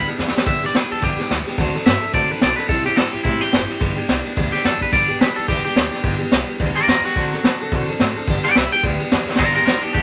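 Heard in a small room with moderate ambience, this rowdy, retro rockabilly excerpt swings as a clean, twangy, scooped electric guitar takes a solo from 0.5 s over a bright, full-bodied picked jumbo acoustic guitar, a woody, thumpy pizzicato upright bass set in the background, and an up-front vintage brush kit with a punchy kick, high-tuned snare and dark cymbals that plays fills at 0.2 and 9.3 s.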